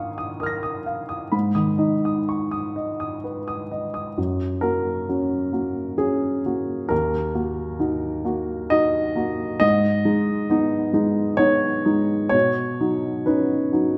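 A woody upright piano opens this short fragment of a longer piece on a D#sus2 chord, sitting up front and playing alone for the full 14 seconds. The style is neoclassical minimalist piano in F# major, moving at 65 BPM in a flexible, rubato 3/4 that feels hopeful and tender. The instrument spans D#2 to A#6 and has a warm character, tuned slightly low to A4 = 439 Hz. Around 4.2 seconds a new passage begins, with the harmony moving through F#, D#m and G#m before settling on Badd9 at 12.3 seconds. A moderate reverb, like that of a church or concert hall, gives the piano a gentle sense of space.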